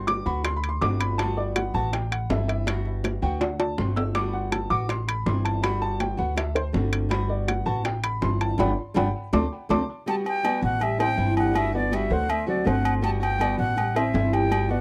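A straight 4/4 groove at 162 BPM carries this sunny, relaxed Cuban son and guajira piece in G major, with low-tuned bongos sitting in the background until 9.8 s, ringing metal-shell timbales and agogo bells close at hand, and a woody, growly upright bass up front. A dark, worn baby grand piano, boxy with audible action noise, takes a solo of arpeggios through tape echo for the opening section, while a fingerpicked flamenco guitar with fresh strings and finger squeak provides accompaniment, and drum fills and a band accent lead into the next section. At 10.1 s an airy, reedy concert flute steps up front with a tongued, straight-tone melody, all captured in a dry, close 1970s-style studio sound.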